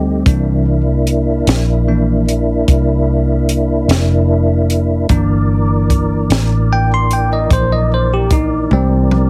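Heavily compressed, radio-style sound with a light touch of reverb frames this short cut from a longer slow blues in 12/8, moving at 50 beats per minute in dotted quarters with a straight, rollicking yet laid-back feel in C mixolydian. A bell-like, clean tine electric piano sits up front and carries a solo throughout, its bright tone set in plate reverb while it also fills the accompaniment role. Beneath it, a mellow tonewheel organ holds sustained chords, lightly overdriven and colored by chorus vibrato, a slow rotary speaker and plate reverb for a round, dusky bed. A vintage muted fingered electric bass, amped, foam-muted and punchy, anchors the low end up front. A compact cocktail drum kit enters at 0.3 seconds, dry and acoustic with a high-tuned snare, firm kick, hi-hat and toms, as the harmony settles on a C9 chord, and the kit closes with a fill from 8.7 seconds.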